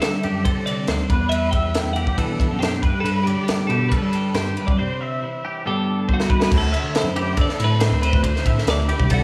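Intricate and playful, this short cut from a longer math rock and midwest emo piece moves at 139 BPM in a straight 4/4, tuned slightly flat of standard pitch. Three clean, picked twelve-string electric guitars fill the texture throughout: one carries the melody through spring reverb, slapback echo and analog delay, another supplies low-to-mid accompaniment with slapback echo, and a third spins arpeggios coated in ensemble chorus, slapback echo and analog delay, all of them bright, compressed and twangy. Beneath them, a bell-like tine electric piano plays the bass line, clean and direct. A crisp fusion drum kit sits up front with a high-tuned snare, punchy kick, crash and ride cymbals, and a pumping small-room character, capping the first section with a fill at 6.1 seconds before the second section arrives at 6.5 seconds. The harmony drifts through colorful chords such as D9sus4, Em11, Gadd9 and Gmaj9 before landing on D9, and the overall mix blends a moderate recital-hall reverb with a big arena sound.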